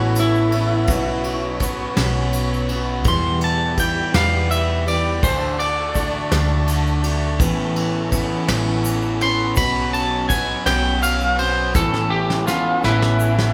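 Warm and open-road in feel, this folk and heartland rock passage in 6/8 puts a twangy, slightly broken-up electric guitar solo up front over a full-bodied jumbo acoustic guitar, a bright, double-tracked overdriven garage guitar riff, a round, punchy hollow-body bass, a shimmering musette accordion and grainy tube shaker in the background, and a brushed drum kit with a fat snare that enters at 0.2 seconds and plays a fill from 11.8 seconds, the band heard live in one room with moderate large studio reverb.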